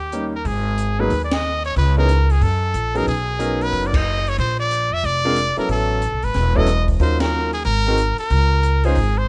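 A swung 4/4 pulse drives this short cut from a longer small-group swing and bop piece, smoky and cool in mood, with trumpet and bass sounding from the first moment, piano and drums joining an instant later, and band accents landing at 1.3, 3.9 and 7.2 seconds. Up front, a brilliant, forceful trumpet carries the solo melody in jazz style, with light vibrato and scooped notes, its punchy lines trailed by tape echo. An upright bass played pizzicato sits just as present beneath it, woody and thumpy with the warm tone of gut strings. A clear concert grand piano comps through chords such as C#m9, Bmaj9, A69 and G#9, natural in tone with a deep low end. The open jazz drum kit, set further back, pairs dark cymbals with a high-tuned snare and a boomy kick, and carries a gritty, vintage sampler edge, while studio reverb surrounds the rough home demo mix.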